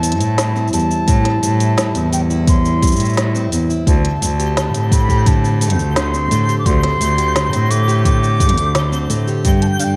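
Autumnal and intimate, this folktronica excerpt at 86 BPM in 4/4 sets a pure, vibrato-touched wooden flute melody with digital delay over picked steel-string acoustic guitar arpeggios with finger squeak and their own delay, an up-front bowed cello bass with a reedy gut-string tone, and an organic electronic kit of woody snare, crisp hats and shaker, joined at 1.1 s by a deep electronic kick and at 4.5 s by a twinkling granular texture shimmering in the background, all under a bed of vinyl crackle as the chords move from Am7 to D7sus4 to G5.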